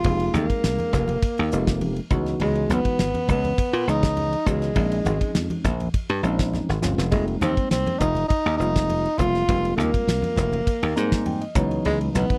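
A straight 4/4 groove at 102 BPM drives this nocturnal, driving electric jazz fusion excerpt in F minor. The damped 70s drum kit sits up front with a fat snare and tight kick, using hi-hat and ride cymbal, and adds a fill at 6.5 seconds, while very quiet, low-tuned congas ring beneath it. A dry thumbed slap bass, punchy and foam-muted, anchors the low end. A bright tine electric piano, clean and heard through its built-in speakers, supplies harmony over Fm11, Dbm11 and Bbm11 before playing a fill at 10.7 seconds. Over this, a breathy tenor saxophone carries the melody as an intimate, whispered solo with a mellow tone, soft attack and vibrato. The 1970s-style studio sound is close, with little reverb.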